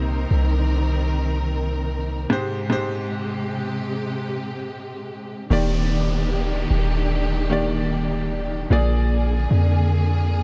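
Contemporary R&B at a slow 75 BPM in Eb major, smooth and tender, with a clear, natural concert grand piano providing accompaniment over lush bowed studio strings with expressive vibrato, a deep, boomy 808-style bass sitting up front, a break from 2.3 seconds, and an electronic downlifter entering quietly in the background at 5.5 seconds, all moving through Cm7, Abmaj7, Ebmaj7 and Bb7 in a dark, warm small-room production.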